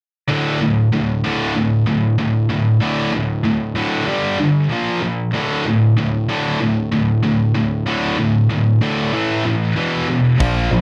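A straight 4/4 pulse at 95 BPM drives this dark, epic heavy metal excerpt in D minor, where two bright, distorted high-gain electric guitars, one of them scooped, play the riff from 0.3 seconds across a power-chord progression of D5, G5, Bb5, D5, A5 and E5. A growling, overdriven picked electric bass and a tight metal drum kit with a mid-forward, rolled-off top appear only briefly at 10.4 seconds, just as the fragment cuts off. The sound is dry and close, in the manner of a 1970s studio recording, with the guitars and bass up front.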